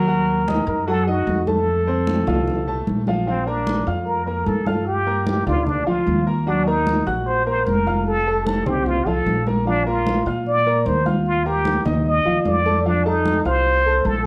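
Relaxed and danceable, this short cut from a longer Cuban son and guajira piece moves at 150 BPM in Bb major, with a plunger-muted trumpet carrying a breathy, whispered wah-wah melody up front over a concert grand piano playing arpeggios with audible action noise and long sustain. A woody, growly pizzicato upright bass anchors the low end while bright, thin-skinned congas sit distant in a large room, entering at 0.1 seconds. Moderate studio reverb and the warbling pitch drift of worn cassette tape give the whole an intimate, aged feel as the chords move from Ebmadd9 and F into a Bb, Gm7, Ebm progression.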